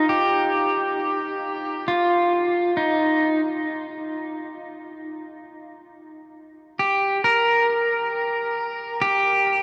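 Ambient music, luminous and weightless, moving at a slow 67 BPM in a straight 4/4 with tuning set to A4 = 441 Hz. A lone electric pedal steel guitar carries the whole passage from 0.0 to 9.6 seconds, played with fingerpicks and slide and shaped by volume swells. Its tone is bright, clean and twangy, compressed and placed up front, with a delay trailing its notes as it moves within a narrow range from Eb4 to Bb4. A vast, wet reverb with a decay of 8.1 seconds surrounds the guitar, so each phrase hangs in a glowing, open space. The recording is a short cut from a longer piece and stays within a single section throughout.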